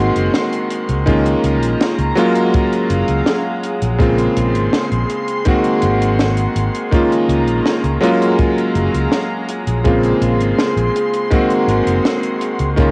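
A bright, cutting electric grand piano accompanies this hazy, nostalgic vaporwave piece. Its vintage, direct tone has a clangy low end, sits up front, and is washed in lush chorus and analog delay as it moves through rich chords cycling from Ab7 through Db69, Gbmaj9 and Bbm9. Beneath it, a growly, amped fretless electric bass holds the low end. A dark, distant studio string section sustains chords with light vibrato and a reedy, gut-string, period-style ensemble tone. A compact cocktail drum kit enters at 0.2 seconds with hi-hat and a high-tuned snare, and a dry, punchy kick joins at 1.1 seconds, both drum parts carrying a cassette-tape colour. Cut from a longer piece in a straight four-beat feel, the recording has the light, small-room ambience of a home cassette recording.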